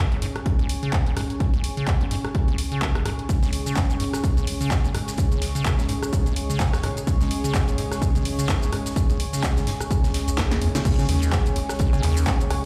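A squelchy, resonant square-wave acid bass riff with overdrive and delay drives this raw, gritty acid house excerpt at 127 BPM with a 16th-note swing, backed by an up-front punchy electronic kick, a tape-warm analog drum machine of cowbell, clap, rim click, shaker, hats, snare and crash, a deep, moody chorused pad with sidechain pumping, a lush, detuned unison pad of sustained chords and a very quiet, polished acoustic kit that both enter at 3.3 seconds, a drum fill at 10.4 seconds, and a drop at 10.9 seconds, all played out in a bare room with large studio reverb.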